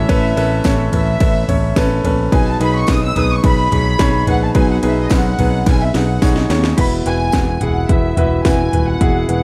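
This excerpt opens on a clear, polished baby grand piano and a bowed string section together, with a punchy electric bass beneath them, in an uplifting, piano-driven pop piece in E major at 108 BPM. The violin section carries the melody high in its range, its gut-string tone reedy and lightly touched with vibrato, sitting close yet slightly behind the up-front piano chords. A house drum kit joins at 0.1 seconds, electronic and layered, with a cracking snare, metallic hats and a tape-warm character from being re-recorded in a small room. A jingly tambourine sits dry in the background from 0.6 seconds, and a drum fill between 5.7 and 6.8 seconds leads the harmony from Aadd9 and B6 onto an Esus2 for the closing phrase. Light reverb and digital ambience frame a dark, warm production with a steady, straight pulse.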